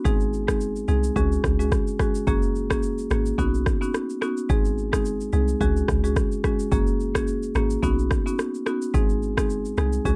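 Afrobeats with a romantic, joyful glow, this short cut from a longer piece rides a lightly swung sixteenth-note feel. A marimba played with medium mallets carries the accompaniment up front, its tone dark and smooth as it moves through a looping progression of G#, C#sus4, F#add9 and Badd9. Underneath, a deep log drum bass gives round, percussive notes with a fast attack and a dark decay, touched by a noisy edge. The electronic afro-pop drum kit sits forward in the mix, its deep kick, rim click and shaker pushed through overdrive. The whole track sounds dry and gritty, with little reverb and the grain of cassette tape.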